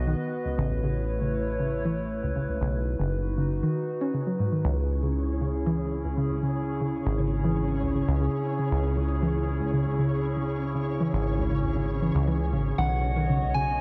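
A warbling, nostalgic pad of sustained chords opens this cerebral, intricate IDM excerpt at 118 BPM in C# minor, joined at once by a rubbery, saturated acid bass with a resonant filter sweep and soft, round plucked arpeggios carried on chorus, cassette tape grain and dub echo. The harmony moves through Badd9, Aadd9 and B before settling on C# minor, where the pad's lo-fi, detuned character and the bass's dark, up-front weight hold the ground. From 4.9 seconds a faint, flickering granular texture drifts in, adding a grainy shimmer. At 12.8 seconds, as the chords return to Badd9, a gentle, keys-like struck lead with a vintage FM tone, vibrato and analog delay steps forward with a brief, bright melodic figure. The mix is echo-heavy, bathed in a moderate spring reverb that lends the whole fragment a hazy, intricate depth.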